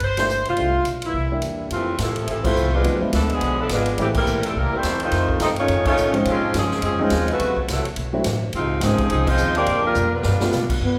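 Energetic and brassy, this big band swing excerpt races along at 211 BPM, with a clear, tight saxophone section carrying the melody over woody, thumpy pizzicato upright bass, a swinging drum kit with dark cymbals and a punchy kick, and an intimate grand piano whose action noise is audible. A loose trombone section enters in the background at 1.0 s as a second line, band accents punctuate the chart, and a drum fill at 10.0 s leads to a brief, forceful solo trombone note at 10.9 s. The harmony moves through rich chords such as Fmaj7, E7b9 and Dbmaj9, and a wet recital hall reverb gives the whole a roomy glow.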